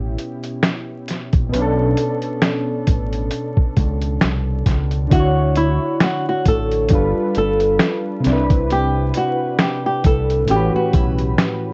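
Heard through worn, warbling cassette tape with vinyl crackle, drifting pitch and a dulled top end, this hazy, nostalgic lo-fi hip hop excerpt sets detuned, chorused synth keys over a dark, round dub bass and a muffled, thumpy sampler-style drum kit with 12-bit grit, before a fingerpicked acoustic flamenco guitar takes the melody at 5.1 seconds, bathed in plate reverb.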